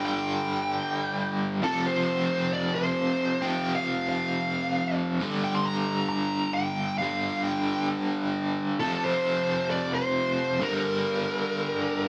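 A straight, driving four-beat pulse carries this menacing rock fragment, cut from a longer piece. Two electric guitars, both overdriven and picked, play together from the start to 12.1 seconds. Up front sits a cranked stack guitar, bright and double-tracked, pushing a low riff colored by tremolo. Above it, a smooth, dark lead guitar sings a high melody through a digital delay. The harmony moves through G5, F5, Gm, back to F5 and home to G5, and the whole sound has a heavily compressed, radio-like quality with a light reverb and digital ambience.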